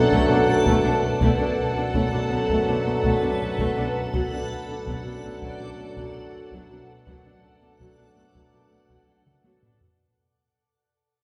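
Ominous and mysterious, this suspense film cue at 82 BPM hangs on a single Bm7 chord while it fades out over its ten seconds, cut from a longer piece and bathed in the reverb of a concert hall. Soft-attack, sul tasto violin sections carry a floating melody and an intimate second line above a background viola section, with very quiet woody cellos and pure double basses beneath, while bright trombones and distant, roomy French horns hold sustained chords. A reversed, granular swelling texture, a ringing fingerpicked harp riff, a mellow, boxy grand piano kept very quiet, and compressed, saturated taiko drums struck with hard sticks complete the picture, the drums closing with a fill from 9.3 seconds.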